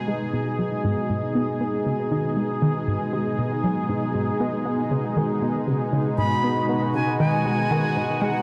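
Ambient, sequencer-driven space music at 118 BPM in G# minor, cosmic and expansive, where a tight, driving sawtooth sequenced synth riff with a filter sweep runs under an airy, resonant pad holding sustained G#m chords up front, a very quiet pulsing gated texture joins at 1.5 seconds, and a breathy, bright concert flute melody enters at 6.2 seconds in this excerpt cut from a longer piece, all bathed in a huge, dark ambient reverb.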